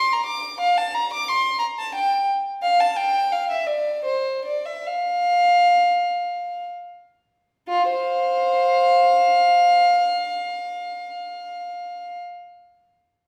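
A lone violin with a rich, reedy gut-string tone plays up front in period style through this dance-like, radiant baroque-style suite movement in F major, tuned to A4 = 444 Hz and cut from a longer piece, moving in a rubato 3/4 between 58 and 91 BPM as it slows from 1.6 to 7.7 s before a new section begins, all set in a wet stone room whose 1.3-second reverb is heard from further back in the space.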